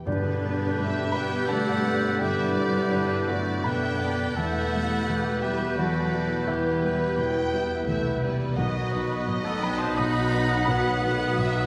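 Bathed in a wet scoring-stage reverb, this hopeful, moving cinematic film-score excerpt in a rubato 3/4 sets a distant, expressive violin section's melody from 0.8 s over a mellow felt-muted upright piano with audible action noise, a very quiet ringing harp playing arpeggios, a clear solo clarinet, a lightly vibrato oboe, a pure flute section and a lush, soft-attack second violin section on second lines, a rich viola section, dark, roomy French horn chords, a portamento-inflected cello section and a smooth-topped double bass section, while soft-mallet timpani sound only from 0.1 to 1.1 s.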